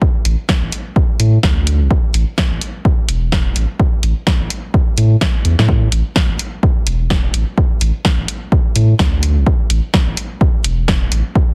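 A swung 4/4 groove at 127 BPM, with 60% swing on the sixteenths, drives this short, quirky cut of minimal techno in A minor, taken from a longer piece. An electronic kick drum opens the clip at 0.0 s and sits up front, analog and punchy, with the character of having been re-recorded in a large room. From 0.3 s a punchy analog drum machine adds hi-hat and snare, its snare carrying that same large-room re-recorded tone, while a saturated sub bass enters alongside it, deep and thick with a triangle-like core, a fast attack and sustained notes ranging from E1 to A2. The bass pumps against the sidechain, giving the sparse arrangement its breathing motion. The mix is dry and heavily compressed, with a radio-like sound that keeps the three parts close and forward.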